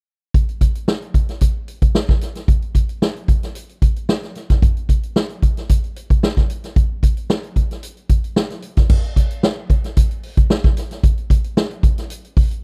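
A swinging big-band drum kit opens at 0.3 seconds, playing alone in a straight funk feel at 112 BPM, with crash cymbal, hi-hat, boomy kick and a medium-tuned snare set up front. The mood is driving and hypnotic, and the kit has a natural, acoustic character with the sense of a big room, captured in a dry, close 1970s-style studio sound. The part shifts into a new section at 8.9 seconds and runs until this short cut from a longer piece ends at 12.6 seconds.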